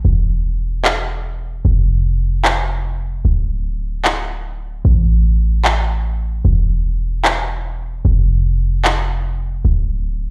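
Future bass at 150 BPM in 4/4 with a half-time feel, this short passage carries an emotional, bittersweet mood. A warm 808-style bass anchors the piece from the very start, sitting deep and boomy between D1 and A1, its sine tone edged with a noise layer, a fast attack and a mellow decay, all pushed up front and thickened by tube saturation. Electronic handclaps arrive at 0.8 seconds and continue until 8.9 seconds, layered and polished, with a tape-tinged warmth and a forward place in the mix. The bass carries on alone until the cut at 10.3 seconds. The whole passage sounds as if played through a big sound system in a bare room, with light reverb, digital ambience and a large studio reverb giving it a spacious, resonant air.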